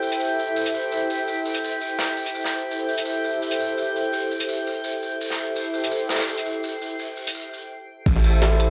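A warbling, detuned tape-like pad holding an Am7 chord, a crunchy, saturated breakbeat kit of hi-hat, shaker and snare, and a glassy texture of drifting overtones open this nostalgic, raw drum and bass and jungle excerpt at 168 BPM in A minor, all sitting in a lush hall reverb until the drums drop out at 7.6 seconds and the glass texture at 7.7 seconds, before a gritty, pitched-up jungle sampler kit with a thumpy kick and a deep, boomy 808-style bass arrive at 8.1 seconds.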